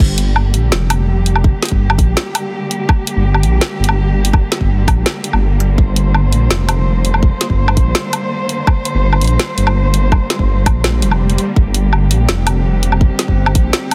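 Tense and dark, this short excerpt of half-time drum and bass at 166 BPM in G minor pairs a tight, up-front electronic kick and a layered kit with woody snare, bright hats, crash and woodblock against a deep, rumbling detuned saw bass, while a bowed cello section holds sustained chords with vibrato and portamento under sidechain pumping, a background swell sounds at 11.0 seconds as the kick briefly drops out, and an eerie, inharmonic drone with chorus and phaser closes it out, all in a dry, heavily compressed, radio-like sound.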